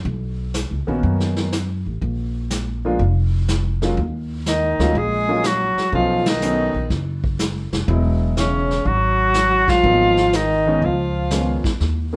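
Small-group jazz in a swing and bop vein, this smoky, swinging clip is cut from a longer piece and rides on a loose, swung eighth-note feel. An upright bass opens with woody, pizzicato lines set up front, joined by a vintage brush drum kit with dark cymbals, a punchy kick and a rolled-off top, and a baby grand piano comping with a natural, short-sustained tone from 0.9 seconds. At 4.5 seconds a tenor saxophone takes the melody, its warm, vintage tone carrying a light vibrato, while a bright, forceful trombone plays a second line beneath it with scooped notes. The band hits an accent together at 6.2 seconds, over rich extended harmonies that move through major ninth, minor eleventh and dominant seventh chords. A wet studio reverb places the group a little further back in the room, giving the session an intimate, club-like air.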